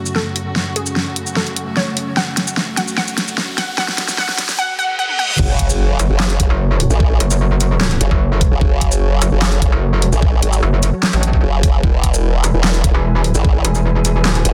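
A detuned, bright sawtooth pluck opens this heavy, menacing half-time wobble dubstep excerpt, its melody run through a filter sweep, cassette tape colour and digital delay, over lush bowed strings with vibrato and a lo-fi, warbling pad, both pumping with sidechain in the background. Overdriven dubstep drums with a huge snare, toms, handclaps, hi-hat and shaker fill out the build-up, while a riser, reverse cymbal and impact rise from the back of the mix. The pad drops out at 4.6 seconds, and at the drop at 5.4 seconds the pluck stops as an overdriven, knocking electronic kick arrives with a formant-sweep wobble bass of pulse and sine tones. A metallic, aggressive FM wobble bass joins at 6.0 seconds, saturated and up front, both basses thickened with chorus. The dark, nostalgic pad returns at 12.4 seconds over the strings as the harmony moves from F# minor to E, all within a dense, heavily limited and dry modern master.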